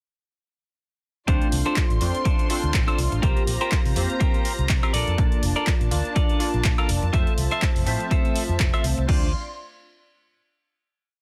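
The recording is dry and close, with little reverb, giving this short filtered disco house piece in D minor a sensual, groovy feel at 123 BPM with a light 16th-note swing. At 1.3 seconds the full band drops in together: an overdriven, up-front electronic kick drives a four-on-the-floor pulse, while a punchy, overdriven analog drum machine adds closed and open hats, claps, a high woodblock and crash, its hats, percussion and cymbals pumping against the kick. A fingered electric bass runs a bright, amped, funky syncopated line through an envelope filter, and a clean, compressed electric guitar picks a funk chord riff in close voicing. A sawtooth-and-square polysynth comps with held chords and syncopated pushes, its mellow tone colored by chorus, phaser, filter sweeps and a cassette-tape grit. Underneath, a dark, intimate string section bowed sul tasto with light vibrato holds soft pad chords through Dm7, C7sus4, Bbmaj7 and Fmaj7, and the bass, guitar, synth and strings all breathe with sidechain pumping before the piece settles on a final Dm7 from 9.1 to 11.0 seconds.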